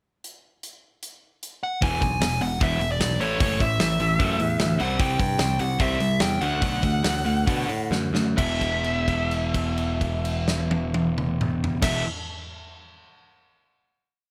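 Rowdy and rebellious, this short punk rock piece opens with a pickup bar on a big acoustic rock drum kit: tight kick, medium-tuned snare, hi-hat, crash and toms sit up front in a roomy, rolled-off sound with a fast punk groove. Near the end of the pickup, at 1.6 seconds, a dark, smooth lead guitar enters, overdriven and set up front with digital delay. At 1.8 seconds the verse begins. An overdriven electric guitar and a sludgy distorted guitar both chug palm-muted eighth-note riffs, the sludgy one tucked in the background. A bright, growly picked bass drives eighth notes with a punchy, direct tone. Above them the lead guitar plays a motif-based melody in sentence-like phrases while the chords move from E through A5, C and D. The pace slows from 5.0 seconds, and a drum fill leads into a final E5 chord held until about 11.8 seconds, all in a light reverb.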